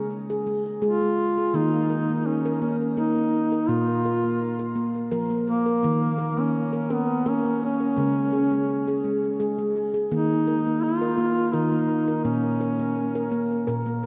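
Hypnotic and meditative, this world-music piece drifts along at 84 BPM in a straight 3/4, tuned slightly high to A4 = 443 Hz, and is cut from a longer work. A handpan of nitrided steel, struck with the fingertips, carries the arpeggios from the very start, its ringing, vintage, band-limited tone sitting up front and trailed by tape echo. At 0.8 s a duduk enters with the solo melody in a folk style, its warm voice full of vibrato and scooped notes, coloured by shimmer reverb and tape echo. The harmony moves from Db through Eb5, Bb5 and Db5, and a second passage begins at 10.1 s, settling onto Bbm. A lush hall reverb soaks the whole dreamy mix, giving the parts a long, glowing tail.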